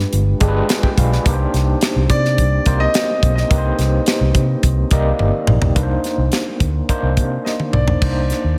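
A barky, overdriven tine electric piano enters at 0.0 seconds, its gritty tone run through a combo amp with medium tremolo, tube saturation and a subtle chorus as it provides accompaniment up front. This short clip from a longer piece is polished 1980s jazz-funk pop in C minor at 106 BPM in a straight 4/4, with a nocturnal, bittersweet mood that moves from G7b9 to Cm9. A vintage, foam-muted fingered electric bass sits up front with a dark, round, amped sound, beside a tight funk drum kit whose high-tuned snare, tight kick, hi-hat, toms and crash sound dry and airy under gated reverb. A warm concert grand piano takes the melody from 2.1 seconds, staying between D5 and Eb5. Drum fills arrive at 5.2 seconds and again near the close, and the whole band sits in a small room ambience.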